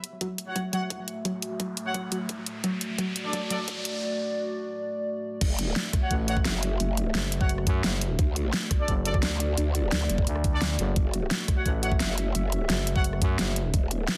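Dense and heavily limited with light digital ambience, this aggressive, mechanical cut of dark technical drum and bass in F# minor at 173 BPM opens on a build-up where a knocking, overdriven electronic kick and an overdriven dubstep kit with a huge up-front snare drive beneath a moody, phaser-tinged analog pad, a warbly, nasal, lo-fi pluck arpeggio, bright brass stabs with light vibrato and an electronic riser from 1.4 s, before the drop at 5.4 s brings in a wobbling, detuned growl bass joined by a thick FM bass as the chords move between F#m7 and D.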